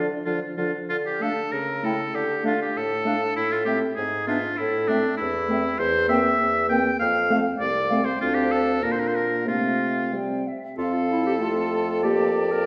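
A bright, up-front oboe with light vibrato carries the second line over a distant, pure-toned flute melody with vibrato in this spirited, graceful excerpt from a quick classical-period movement for wind quintet with a flexible rubato feel, as a clear, close-miked clarinet and a mellow, roomy French horn fill in the accompaniment above a warm bassoon bass, all five heard from further back in a wet recital hall.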